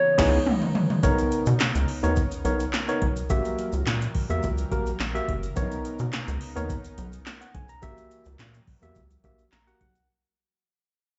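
A straight 4/4 groove drives this late-night, slick early-eighties boogie funk excerpt, which opens on a drum fill and band accent before fading out from 1.0 s. A punchy electro analog drum machine with a deep kick, metallic hats and handclaps plays alongside a rubbery, resonant square bass up front, a worn, slightly out-of-tune tine electric piano with overdrive and slapback echo that adds a fill at 9.2 s, and a shimmering chorused pulse-width pad in the background. A grainy tube shaker joins at 1.0 s, and everything is heard as a live gig through the venue's PA with club reverb and a dull top end.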